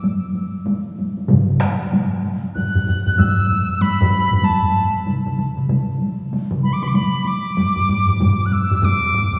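Driving and ceremonial, this brief excerpt of Japanese traditional taiko drumming moves at 96 BPM in 4/4 with a swung sixteenth feel. One taiko ensemble struck with heavy sticks opens alone, two more hard-stick groups join at 1.3 seconds (one up front, the other close and dry, stopping at 6.9 seconds), and a pure, bright piccolo enters at 2.6 seconds with a tongued, unsteady, vibrato-laden melody between A5 and F#6, all set in the wet reverb of a church.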